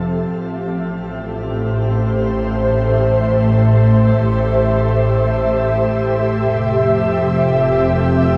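An ethereal, airy pad sits up front, holding sustained chords with a slow attack and long release, its detuned sawtooth and triangle layers thickened by a breath of noise, ensemble chorus and its own built-in reverb. Beneath it, a bowed double bass section adds a smooth, even low foundation with warm vibrato, sitting well behind the pad in the mix. Both parts fade in together across the full 8.4 seconds of this short cut from a longer ambient piece in free time. The harmony moves from Am7 at 0.3 seconds to Fmaj7 at 6.5 seconds, giving the passage a peaceful, luminous glow. A wet shimmer reverb with a long 7.4-second tail bathes the sound in a hazy, suspended space.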